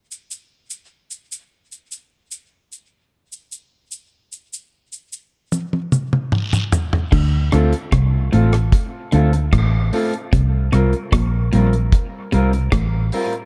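This dub reggae excerpt has a hypnotic, meditative mood, with a dark production and light small-room reverb. It opens as a sparse break in which a cabasa and guiro, thinned by a high-pass filter, scratch softly from 0.1 s. A deep reggae drum kit arrives with a fill at 5.5 s, its tight, dry kick sitting up front alongside crash, hi-hat, rim clicks and toms. At 7.1 s the band enters on a Dm7 chord that later moves to C7sus4. A foam-muted vintage fingered bass anchors the low end with a round, amped tone, and from 7.5 s a mellow fingered guitar adds accompaniment with subtle chorus and dub echo. Behind them, a bright, twangy, compressed picked guitar plays a low riff that gets a filter sweep from 10.3 s.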